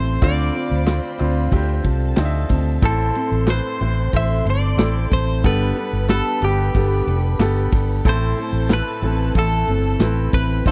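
A grainy egg shaker enters at 0.1 s, and from 0.2 s a straight 4/4 pulse at 92 BPM comes from an up-front modern studio drum kit with a punchy kick, snare, hi-hat, bright ride cymbal and handclaps, while a dark, round, foam-muted fingered electric bass sits forward in the mix. In this dramatic, bittersweet piano-driven pop passage in A minor, a clear, polished baby grand piano accompanies a twangy, compressed twelve-string electric guitar carrying the melody. A picked steel-string acoustic guitar riff with audible finger squeak and a lush, vibrato-rich symphonic violin section sit in the background over Dm7, Am, Gadd9 and Am, all in a dry, close 1970s-style studio sound.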